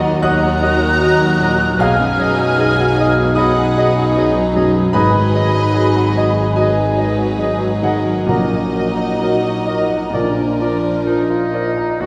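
A rubato 4/4 pulse at 62-78 BPM carries this tragic, passionate romantic movement in Eb minor, where a clear, intimate grand piano with audible action noise leads the melody up front alongside soft-attack sul tasto violins, while a hollow flute, a second violin line, oboe and very quiet clarinet weave second lines over dark violas, bassoon, very quiet warm horn chords, cellos and a floating double bass, the ensemble set in a wet scoring-stage reverb heard from further back, with very quiet, hard-mallet timpani entering at 8.3 seconds.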